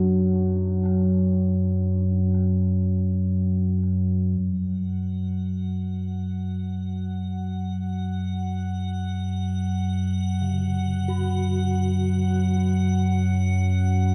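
A deep, rumbling drone sits up front for the whole of this vast, ominous dark ambient excerpt, its sawtooth-and-triangle tone bathed in its own reverb and a cathedral-like room. A bronze gamelan-type metallophone, struck with a wooden mallet and shimmering from its paired tuning, ripples arpeggios in the background through tape echo, falls away and fades back in at 10.4 seconds. From 5.0 seconds, an icy, crystalline glass pad of sine tones and airy noise fades in high above with chorus, as the music floats in free time.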